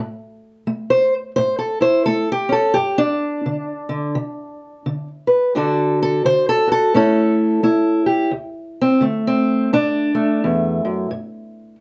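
A fingerpicked steel-string parlour guitar with old strings, woody and boxy in tone and up front in a dark production with moderate studio reverb, carries this rollicking, swaggering acoustic country blues alone in a swung 4/4 from 0.0 to 11.8 seconds, a short cut from a longer piece.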